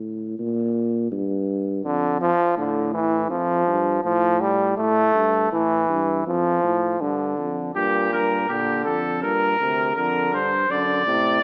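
A mellow tuba opens this contemplative, serious canzona for brass ensemble alone at 0.0 seconds, laying down a low bass line in a straight, measured 4/4 with a light vibrato. At 1.8 seconds a clear trombone joins as accompaniment, sitting up front in the middle register over chords that move through minor and added-ninth colours. A punchy trumpet enters at 7.8 seconds with a second line higher up, its tone both distant and roomy despite its forward place, and it shares the tuba's gentle vibrato. The imitative writing keeps all three parts in a poised classical style, with the trombone and trumpet sounding somewhat louder than the tuba. A moderate concert hall reverb surrounds the ensemble, though the overall sound has the quality of a small speaker, and the passage is cut from a longer piece.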